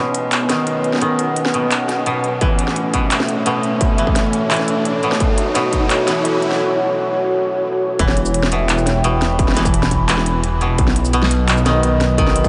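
A woody, fingerpicked koto plays arpeggios under a filter sweep through the build-up to the drop at 8.0 s in this spacious, heavy half-time drum and bass passage, joined by a moody, detuned analog pad with sidechain pumping, a rumbling saw bass, an eerie metallic drone and a very quiet riser in the early bars, an industrial kit with a clanging snare and crisp hats, and a distorted electronic kick from 2.4 s, the mix soaked in a huge, dreamy reverb.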